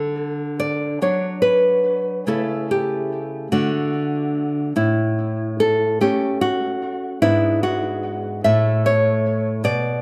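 A bright, up-front nylon-string guitar plays alone throughout this short cut from a longer romantic piece for solo classical guitar, fingerpicked in a nostalgic, warm mood at a slow 49 BPM in 6/8 with a rubato feel. Its tape echo sits inside a moderate recital hall reverb, while the harmony moves from D through A7/C# and back to D, reaching A at 4.8 seconds and passing through G#m7b5 before settling on A.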